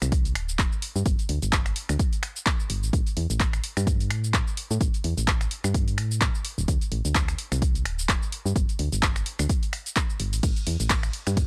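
A dry, gritty sound with transformer saturation and digital ambience frames this energetic, soulful piano house excerpt in A minor at 128 BPM, its 4/4 groove carrying a light swing on the sixteenths. A punchy, overdriven analog drum machine sits up front with cabasa, finger snaps, handclaps, hi-hat and ride cymbal, joined at 0.1 seconds by a layered electronic kick drum, also overdriven. Underneath, a round, dark FM bass with a fast attack and decaying notes pumps against the sidechain, moving between D1 and A2 throughout.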